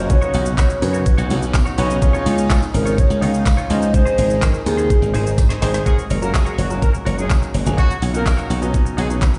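A straight 4/4 groove at 125 BPM from an up-front electronic R&B kit, with knocking kick, woody snare, metallic hats, handclaps and shaker, drives this euphoric, carefree dance-pop piece, where punchy glassy slap bass, an intimate concert grand with audible action noise and a shimmering, ethereal phaser-touched pad pump with sidechain beneath a twangy clean guitar riff and a jingly tambourine in the background, as a hollow clarinet-like synth lead with vibrato carries the tune until 5.3 s and, after a drum fill, a clear, distant horn section enters with the melody at 5.9 s over chords moving from Cbadd9 to Dbadd9, Ab and Gb, set in a large studio reverb.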